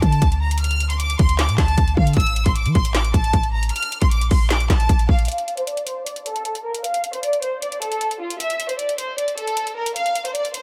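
Hip hop in a trap style, this dark, melancholic fragment of a longer piece moves with a half-time feel. A lush studio violin section carries the melody throughout, its bowed ensemble tone full of vibrato, focused and smooth on top, softened by a low-pass filter. Underneath, a clean, sine-like 808-style bass sits deep and boomy with a fast attack and decaying notes while the harmony moves from D minor through A5 to B-flat major seventh, before the bass drops out at 5.3 seconds. The electronic trap kit stays up front with a hard-clipped kick, a woody snare, metallic hi-hats and handclaps, all carrying a tape-like character. From 5.3 seconds the harmony falls away and a filter sweep moves across the violins, leaving the strings and drums alone in a dry, close-sounding mix.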